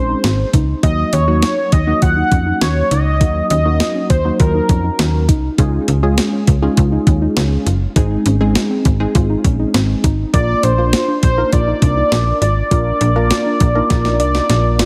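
Driving and cool, this synth-pop excerpt moves at 101 BPM in 4/4 with a straight feel, set in Eb dorian and tuned slightly sharp to A4 = 441 Hz, cut from a longer piece. A bold, retro octave-doubled lead carries the melody up front, its sawtooth-and-triangle tone colored by chorus, phaser and vibrato; it drops out at 5.2 seconds and returns at 10.3 seconds. Beneath it, a punchy, funky polysynth comp of detuned sawtooth with a moving notch and chorus holds down dark, sustained chords, while a soft, round pluck, wave-folded with a noise layer and treated with chorus and digital delay, sits in the background playing arpeggios. A snappy, slap-like FM bass with a metallic attack and quick decay sits up front alongside a clean, sampler-style 12-bit drum machine, overdriven and re-recorded in a small room, with a thumpy kick, medium-tuned snare and hi-hat, which ends the passage with a fill at 13.9 seconds. 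The harmony moves from Ab and Ebm through Db and Ab to Bb, all set in a moderate concert hall reverb and squeezed into a heavily compressed, radio-style sound.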